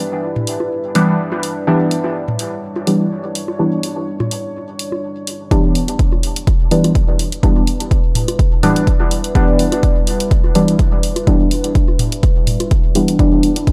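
Swung sixteenths at 125 BPM in 4/4 drive this deep, cavernous dub techno excerpt in E dorian, resting on a single Em7 chord. A moody, detuned sawtooth pad with a sub octave and slow attack holds sustained chords from the start, its chorus and built-in reverb adding depth while sidechain pumping makes it breathe. Electronic toms and bongos with a tape-warm analog character enter at 0.4 seconds, carried by dub echo and studio reverb, and a layered electronic hi-hat joins soon after. Up front sits a soft, warbling chord stab with a fast attack and decaying tail, its vintage detuned tone colored by chorus, phaser and dub echo. A punchy, layered kick arrives at 5.5 seconds to open the second section and anchor the groove. The recording is dry and gritty, with transformer saturation and only light reverb overall.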